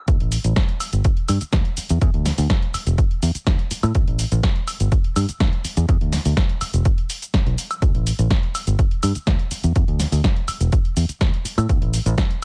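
A straight 4/4 groove drives this funky, sensual filtered disco house passage, cut from a longer piece and sitting in a drop throughout. An up-front electronic kick and an analog drum machine with a punchy snare, hi-hat, shaker and woodblock play from start to finish, the hats and percussion pumping with sidechain. A foam-muted fingered electric bass, direct and up front, moves between E1 and A2 through a low-pass filter and its own sidechain pumping, in a dry room with little reverb.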